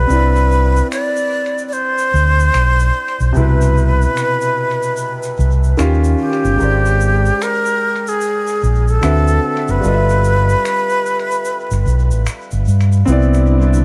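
A slow, relaxed 4/4 groove at 74 BPM sways with a strong sixteenth-note swing, set by a tube shaker and finger snaps that sit low in the mix with a small-room, acoustic quality and a touch of tape echo. The fingered electric bass is the most forward voice, dark and round with an amped edge, anchoring this neo-soul R&B piece in C major. Above it, a breathy jazz flute carries the melody until 12.3 seconds, with a soft attack, unsteady vibrato and lifted highs, all trailed by tape echo. A clear concert grand piano with deep lows, long sustain and tape echo accompanies through a progression from Cmaj9 to Eb9, Abmaj9#11, D13 and G13 before returning to Cmaj9 at 13.1 seconds. Only at 13.4 seconds does a silky, warbling string machine appear in the background with ensemble chorus, just as the fragment ends amid light reverb, vinyl crackle and an echo-heavy mix.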